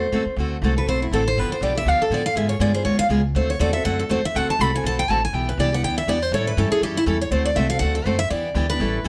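Lively, swinging jazz manouche at 242 BPM in D mixolydian, this 9-second cut from a longer piece features a bright, full-bodied jumbo steel-string guitar taking the melody as a solo with audible finger squeak and a touch of plate reverb, backed by a second picked steel-string guitar with fresh strings and a woody, thumpy pizzicato upright bass on gut strings, all set in a light room reverb over changes moving from D7 through G7, G#dim7 and Em7 to A7.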